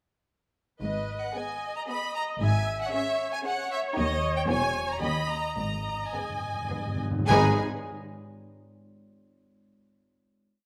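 Dramatic and restless, this short, complete classical-period movement for symphony orchestra moves in a quick, rubato 3/4 in G# minor, with a clear, focused chamber violin section carrying the melody up front while a rich viola section adds a counter-melody and sustained chords, a warm, lush symphonic violin section enters at 1.3 seconds with a second line, a dark, woody cello section sits in the background, and a double bass section doubles the bass line. At 5.6 seconds round, soft-mallet timpani bring a fill as the harmony returns to G# minor, leading to a bare final chord at 7.3 seconds. The strings are bowed with vibrato and set in a wet scoring-stage reverb.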